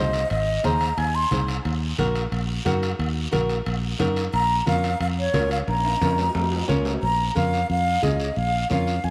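A breathy, up-front concert flute with vibrato carries the melody of this driving, danceable cumbia excerpt in Bb minor at 179 BPM, stating a brief phrase, dropping out at 1.5 seconds, and returning at 4.3 seconds as the chords move from Ab through Ebm to Bbm. Beneath it, a boxy, fingerpicked flamenco guitar with audible finger squeak supplies accompaniment, while a dark, round, foam-muted fingered electric bass anchors the low end. Raspy guiro, thick-skinned low-tuned congas and distant, ringing metal-shell timbales drive the percussion, with a drum fill at 5.7 seconds, all set in a moderate plate reverb.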